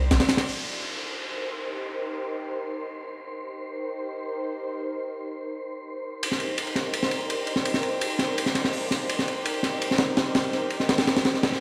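The recording sits in a stone-walled echo chamber, as if played over a big sound system in a bare room, giving every part a moderate reverberant tail. This is a dark, nostalgic drum and bass piece with a jungle flavour, cut from a longer track. An airy, breathy wind-like noise texture hangs in the background from the first moment, carrying its own built-in reverb, while two breakbeat kits flash past at the very start: one up front, acoustic and smooth with dark cymbals and a high-tuned snare, the other a very quiet, gritty, pitched-up sampler-style kit with a tape-warm tone. At 0.5 seconds a lush, thick, detuned sawtooth pad enters on a Cm7 chord, nasal and bright with chorus, its soft attack and long release shaped by a filter sweep, while an electronic downlifter and reverse cymbal pass through. The crunchy, rolled-off acoustic kit returns at 6.2 seconds and drives the rest of the clip beneath the sustained pad, with the downlifter and reverse cymbal returning in the final moments.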